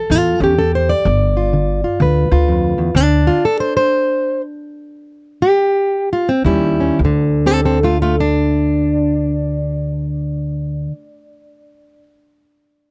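Acoustic country blues with a laid-back, rollicking swing, this short excerpt cut from a longer piece features a fingerpicked, plugged-in steel-string acoustic guitar carrying the melody up front from 0.0 to 12.0 seconds. The guitar has an old-strings, woody character with an auditorium-sized body, ranging from low D2 up to D5. An upright bass plays pizzicato underneath in two stretches, with a dark tone from its steel strings, sitting a little lower in the mix than the guitar. The harmony moves through dominant seventh chords before settling on a D5 power chord, and the pace slows between 3.0 and 7.0 seconds before the music shifts into a new section at 7.0 seconds. The sound is dry and close, like a 1970s studio recording, with just a touch of light reverb.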